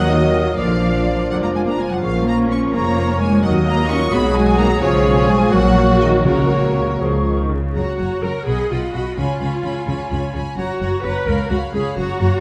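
Dramatic and urgent, this quick classical-period orchestral passage in F# major moves in a rubato 6/8 at 80-89 BPM, counted in dotted quarters, and is cut from a longer piece. A close, lush violin section carries the melody throughout, supported by a more distant second violin line, while expressive violas with portamento fill in the accompaniment. A focused, up-front double bass section with a smooth top and a warm, expressive cello section with vibrato and portamento anchor the bass. Woodwinds and brass color the opening in the background: a bright clarinet, an airy, hollow flute group with crisp attacks, a mellow bassoon with light vibrato, and a horn section holding sustained chords, all of which stop at 7.5 seconds, after very quiet, dry timpani strikes with hard mallets between 6.2 and 7.0 seconds. The strings then carry the closing section alone, moving through F#, B and C#7 harmonies, all set in a reverberant recital-hall space under a layer of vinyl crackle.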